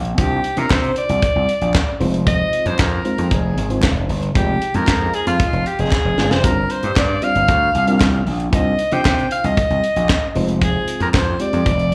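A gritty, overdriven slap bass and a tight funk kit with a high-tuned snare open this late-night, danceable early-eighties boogie funk excerpt at 115 BPM in C minor, joined at 0.2 seconds by a bright alto saxophone lead with vibrato and slapback echo over a dark, full-bodied FM electric piano with tremolo, while distant group handclaps sit far back, a brassy detuned synth brass line with chorus and phaser surfaces at 5.0 seconds during a band accent, and the whole live gig rings through club reverb.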